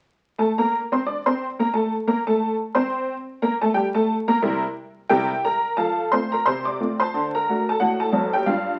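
Playful and cheerful, this brief ragtime excerpt features a lone honky-tonk upright piano in 2/4 with a swung lilt, its detuned, jangly tone sitting bright and up front across a span from F#1 to D6. The harmony moves from Bbmaj7sus2/A to C7, then shifts at 5.8 seconds into a new section over F and D7 before the piece is cut off at 8.8 seconds. A boxy, vintage character comes through a moderate studio reverb, all wrapped in the crackle of a very old 78 rpm record.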